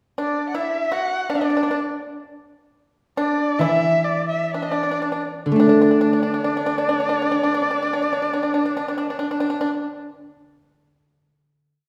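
Rubato in 2/4, this short, festive and graceful Chinese chamber piece begins at 0.2 seconds, slows from 2.0 to 5.6 seconds, and then settles onto a final chord. A rich, bowed erhu carries an ornamented modal melody with vibrato and portamento, while a dry, percussive pipa played with fingerpicks shadows the same line with its own ornaments. From 3.6 seconds a ringing, silvery guzheng adds a low-string accompaniment, all set in a wet recital hall reverb and heard from further back in the room.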